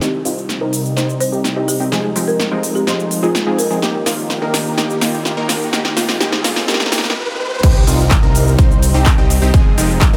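A punchy, tape-warm electronic kick sits up front and lands with the drop at 7.6 seconds, giving this anthemic, emotional festival progressive house cut from a longer piece its weight. Before that, a build-up runs on the layered big-room dance drum kit, with crisp hats, a punchy snare, handclaps, shaker, ride and crash driving a drum fill, then a brief stop. A detuned sawtooth supersaw stab carries the riff through a filter sweep, pumping with the sidechain and trailed by delay, while a lush unison pad holds slow-attack chords, thickened by chorus and breathing with the same pumping. Underneath, a fat, wave-folded analog bass stays very quiet, and a very quiet riser and impact add lift into the drop. A dry, woody folk marimba with medium mallets plays a brief melody in the background from 1.2 to 3.9 seconds, echoed by delay, as the harmony moves through Cm, Fm7, Eb and Ab under light reverb.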